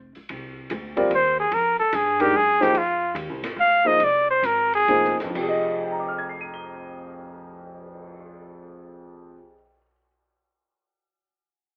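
Spiritual and searching, this brief modal jazz excerpt in a swung 3/4 opens on an Fm9 chord as a bright, punchy trumpet with scooped notes and light vibrato takes a forceful solo up front, slowing down from 2.7 seconds until it ends at 5.4 seconds. A natural-sounding grand piano sits close beside it, while a woody, thumpy pizzicato upright bass and an acoustic drum kit with dark cymbals, a medium-tuned snare and a boomy kick play further back. The rough home-demo mix carries light reverb and a thin telephone-like tone.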